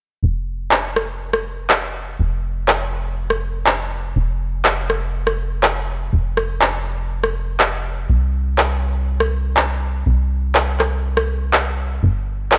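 Progressive house at 122 BPM in a steady 4/4, expansive and bittersweet, this excerpt opens at 0.2 seconds with a punchy, funky analog bass with a dark sawtooth-and-pulse filter pluck ranging from F1 to C2, joined at 0.7 seconds by layered electronic handclaps and rim click set up front in studio reverb, all within a light digital ambience.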